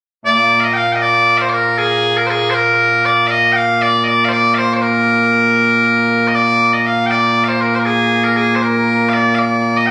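Stirring and proud, this short cut from a longer piece of traditional Scottish pipe music in a straight 6/8 features solo bagpipes, bright and piercing, sounding continuously and up front from 0.3 to 9.9 seconds, captured on a phone in a recital hall with moderate reverb.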